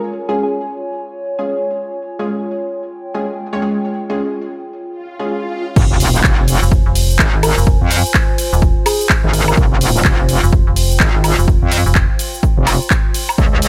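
Aggressive and gritty, this bass house cut runs at 126 BPM in F minor with a swung 16th-note feel. It opens over a Db chord with a warbling, lo-fi pad that carries through to the end. A bold, punchy synth stab in the manner of an orchestra hit rings with reverb and delay, and a round, gentle keys-like lead sits in the background. A background swell and sub drop lead into the drop at 5.8 seconds, where the harmony moves to F minor. Here a punchy electronic kick and a house kit with handclaps, hi-hat, shaker, woodblock and crash cymbal enter alongside a bright, saturated wobble bass, up front and pumping. A digital, metallic FM bass with overdrive joins at 6.6 seconds, and the soft lead returns briefly from 7.4 to 9.5 seconds, all in a dry, loud mix.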